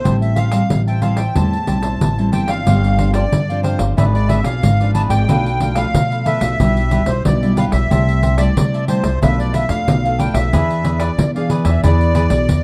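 A straight 4/4 samba and choro pulse at 92 BPM is carried by a jingly pandeiro played with soft hands and heard close. This nostalgic, bittersweet passage in A minor is taken from a longer piece. Its melody comes from a reedy, sweet accordion with light tremolo tuning and plate reverb, moving between C5 and A5. Beneath it, a fingerpicked nylon-string guitar in classical style and a crisp, picked cavaquinho fill out the harmony, with the cavaquinho sitting lower in the mix. The upright bass is the most prominent part, plucked pizzicato on steel strings with a woody tone and placed up front. The chords move from Am7 to G7sus4 at 2.7 seconds and a tense E7b9b13/G#, then pass through Bm7b5, Em7/B and Am7/C before reaching E7 at 10.5 seconds, all within moderate studio ambience and a dark, warm production.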